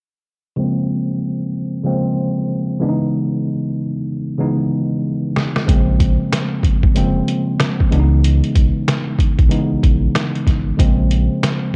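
Gritty and moody, this short boom-bap hip-hop cut is taken from a longer piece and moves at 94 BPM in 4/4 with a swung sixteenth feel in B-flat minor. A worn, slightly out-of-tune tine electric piano opens at 0.6 s, mellow and up front, trading Bbm9 and Dbm9 chords under a low-pass filter sweep and a cassette-tape tint. A sampler-style drum kit arrives with a fill at 5.4 s, its pitched-down, muffled sound pairing a thumpy kick with a medium-tuned snare and hi-hat, compressed and re-recorded in a small room. From 5.7 s a deep, full sub bass with an octave adds sustained, rounded low end with a fast attack. The dry, home-cassette recording keeps the piano and drums close and intimate.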